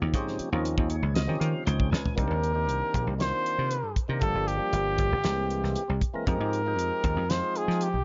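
A breathy, whispered trumpet carries the melody from 2.2 seconds, playing up front with a mellow, soft attack, light vibrato and scooped notes in an intimate jazz solo style. Beneath it, this driving, nocturnal electric jazz fusion piece, cut from a longer performance, rests on a dry, punchy thumbed slap bass with a foam-muted tone and a damped 70s acoustic drum kit with a fat snare and tight kick, both placed close to the listener. A percussive tonewheel organ with key click and second-harmonic percussion turns through a slow rotary speaker, adding a full, clean accompaniment and a fill across the opening bars, while the drums add a fill at 1.9 seconds. For just the first 2.1 seconds, a very quiet, warbling lo-fi pad holds dark, nostalgic chords with chorus and a slow attack. The harmony moves through rich minor and suspended chords such as Eb13sus4, Cm9 and Fm9. The whole mix sits in light, small-room reverb with a softened, rolled-off top end.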